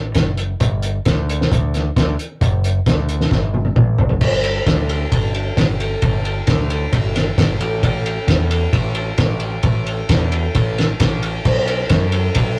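Wistful yet upbeat, this short indie rock passage, cut from a longer piece, moves at 133 BPM in a straight 4/4. A growling picked electric bass carries the low end from the first moment, bright and overdriven with a direct, amped edge as it ranges between F#1 and F#2. A cloth-damped, thuddy acoustic drum kit sits up front, its fat snare and tight kick framed by dark cymbals across crash, hi-hat and ride, with toms adding weight. The kit sounds muffled and gritty, with a rolled-off top and a saturated, lo-fi character. A drum fill from 3.3 to 4.2 seconds marks the shift into a new section that runs to the end at 12.6 seconds. The whole take has the rough feel of a rehearsal room, with moderate booth ambience and tube saturation giving it a close, worn texture.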